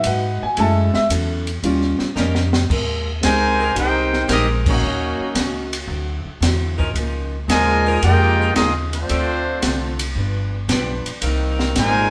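A swung 4/4 at 113 BPM drives this joyful, brassy big band excerpt in Ab major, cut from a longer piece and heard in a moderate stone room with the band playing live together. A clear, woody upright piano with long sustain takes a solo in front from 0.0 s, accompanied from the same moment by a woody pizzicato upright bass, an open jazz kit with a high-tuned snare and boomy kick, and a bright, boxy parlour guitar picked in the background with audible finger squeak. A drum fill ends the piano's moment at 2.7 s, and the saxophone section, close-miked with a soft attack, has already entered at 0.6 s to hold sustained chords. At 3.2 s the trumpet section takes the melody up front with a smooth top and light vibrato, while a tight trombone section carries a second line beneath it. The band hits an accent at 4.6 s as the harmony moves through rich chords such as Abmaj9, D9 and Db69 before settling on Cm7.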